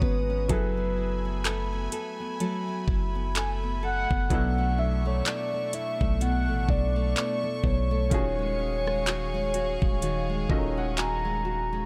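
Sensual and moody, this slow contemporary R&B excerpt at 63 BPM sways with a swung sixteenth feel over F#m11, Bm11 and D#m11 chords, driven by an up-front electronic kit with a knocking kick, metallic hats, handclaps and rim clicks, and a deep, sine-like 808 bass with long decaying notes. A round, horn-like synth lead with vibrato, chorus and delay carries the melody, while fingerpicked nylon-string guitar arpeggios with audible finger squeak, a pumping bed of distant, floating bowed strings and a dark, detuned pluck fill out the small room. A clear but worn grand piano sits in the background and steps forward with a fill from 10.0 seconds.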